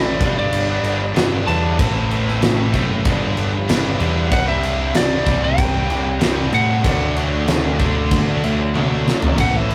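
A steady, straight 4/4 pulse at 95 BPM drives this brooding, cathartic stretch of quiet-loud alternative rock, cut from a longer piece, as a huge arena drum kit with a fat snare, punchy kick, crash and toms enters up front at 0.2 s and plays a fill at 8.7 s. Beneath a twangy, slightly broken-up lead guitar melody, a growling, round bass and a wall of riffing guitars work through G, Am, G, Csus2 and D: a double-tracked distorted guitar and a high-gain one sit in the background while a cranked stack guitar stays very quiet. The rough rehearsal-room sound carries tube saturation and a moderate studio reverb.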